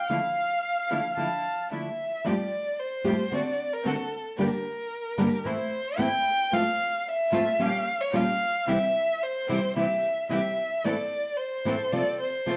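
A dark, bowed violin carries this tense, sultry tango fragment, played by one player up front with vibrato, portamento and expressive shading, and taking over as soloist from 2.2 seconds. A reedy bandoneon opens the melody on F5 but falls silent at 1.7 seconds. A full-bodied nylon-string guitar sits up front as the fingerpicked accompaniment, with audible finger squeak and a deep classical tone. Behind it, a muted studio string section adds veiled con sordino stabs with light vibrato and a smooth top. The rubato feel moves around 111 BPM in 4/4, in F major, with harmony passing through chords such as Gm, Bbm6 and C. The band plays live in one room, bathed in a noticeable studio reverb, and the passage is cut from a longer piece.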